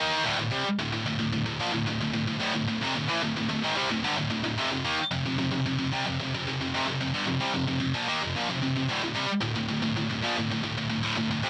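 This short excerpt opens on a bright, up-front wall of distorted electric guitar set in a moderate studio reverb. It is a dark, relentless metal piece in 4/4 at 111 BPM, cast in D phrygian with tuning at A4 = 445 Hz and a straight feel. A single heavy high-gain guitar carries the whole passage alone from 0.0 to 11.5 seconds, picked and double-tracked, ranging from D2 up to Eb4. The harmony moves between power chords, from D5 to F5 at 4.6 seconds and back to D5 at 8.9 seconds. The doubled tracks give the guitar a thick, saturated weight that keeps the mood grim and unyielding.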